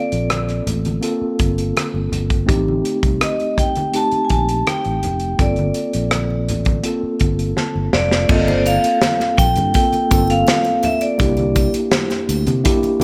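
A ringing, metallic vibraphone struck with hard mallets carries the melody over a lush, bittersweet 1970s-style soul groove at 83 BPM in G minor, with a mellow tine electric piano up front, a round, dark fingered electric bass, and a punchy acoustic drum kit with a rolled-off top. Soft-handed congas sit very quiet beneath, and an electric piano fill from 7.2 s and a drum fill lead into a G dorian passage at 8.3 s, where a shimmering triangle enters in the background. Light reverb and small-room ambience give the clip an intimate, polished feel as the chords move from Gm11 through Am7b5 to a closing C9.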